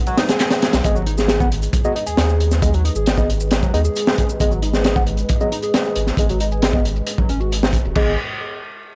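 Breakbeat cut from a longer piece, energetic and funky, where a crunchy breakbeat kit with a punchy kick and a high-tuned snare sits up front over a saturated sub bass, a screaming, guitar-like overdriven synth lead riff and worn, slightly out-of-tune electric piano stabs both carrying filter sweeps from 0.8 seconds, while a moody detuned pad with sidechain pumping and a layered garage kit of handclaps, ride and shaker stay in the background of a dry, gritty recording with vinyl crackle.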